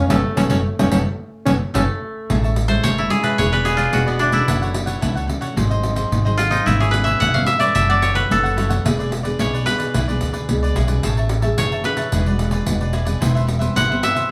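Samba and choro at 110 BPM in A major, playful and festive, opening with a raspy, growling trombone with plate reverb over a band accent that ends at 2.3 s, after which a dry, up-front koto played with fingerpicks takes a solo above crisp picked cavaquinho, thumb-plucked classical nylon-string guitar, a woody, growly pizzicato upright bass and a jingly pandeiro, set in a small-room ambience.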